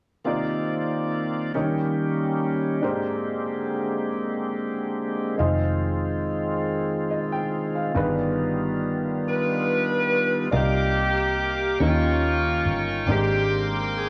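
An edgy, close-miked saxophone section with light vibrato takes the melody at 9.3 seconds in this fervent, solemn gospel excerpt in 6/8, over reedy, lightly overdriven tonewheel organ chords turning on a slow rotary speaker, a woody upright piano with audible action noise, and a round, foam-muted electric bass that joins at 5.4 seconds, captured as a home cassette recording in a small room.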